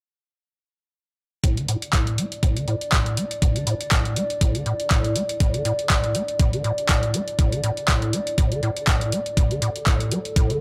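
A dry, gritty hardware recording with little reverb frames this trippy, raw acid house excerpt at 121 BPM in 4/4, with a light 16th-note swing. From 1.4 seconds a thumpy, tape-warm electronic kick and an overdriven, up-front analog drum machine with handclaps and hi-hat arrive alongside a squelchy, hollow square-wave acid bass riff, resonant and plucky, carrying overdrive, ensemble chorus, analog delay and sidechain pumping. At 2.2 seconds a deep, moody analog pad of detuned square, sawtooth and triangle waves with a sub octave enters on slow-attack sustained chords, colored by chorus, phaser and sidechain pumping.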